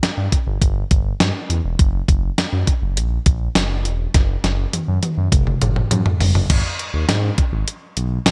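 Uplifting and nostalgic, this short 1980s-style pop fragment pairs a clean 12-bit digital drum machine, up front with a thumpy kick, fat snare, hi-hat, tambourine, toms and crash cymbal bathed in gated reverb, against a smooth, dark, detuned sawtooth-and-triangle synth bass that glides with portamento and vibrato between E1 and G#2, while a drum fill from 4.1 to 6.5 seconds carries the groove into a new section.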